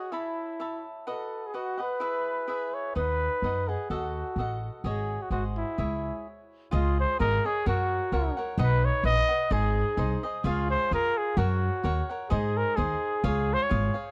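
A mellow trumpet sings the melody up front from the very start, with light vibrato and a smooth, classical-style top, while a crisp, picked cavaquinho supplies acoustic accompaniment beneath it. This passionate, dramatic mariachi passage moves at 128 BPM in 2/4 with a gentle swing on the eighths, opening in C# minor. At 3.0 seconds a woody, growly upright bass joins, its thumpy steel-string pizzicato sitting close and forward in the mix. A brief stop at 6.3 seconds sets up the second section, which shifts to Db major at 6.7 seconds and cycles through major chords. The sound is dry and intimate, like a close 1970s-style studio recording, and the passage is cut from a longer piece.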